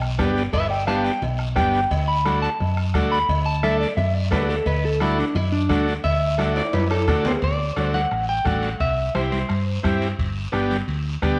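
Cumbia with a joyful, festive mood, cut from a longer piece, carried by a steady straight four-beat pulse. A round, dark hollow-body bass and a soft-beaten bombo open the recording, and almost at once a reedy vintage combo organ with light vibrato joins them up front, alongside bright congas and raspy guiro, while ringing cowbell and timbales sit distantly in the background. From 0.5 s an electric guitar at the edge of break-up takes the melody, its slightly broken-up tone dressed in spring reverb and slapback echo, and the lead is heard as a clean electric guitar solo through the opening stretch. A drum fill at 6.6 s leads into a new section at 7.4 s, where the harmony moves from G and D toward C before returning to G, and the guitar drops out at 9.6 s. The whole recording carries the worn, warbly pitch drift of old cassette tape within a moderate large-studio reverb.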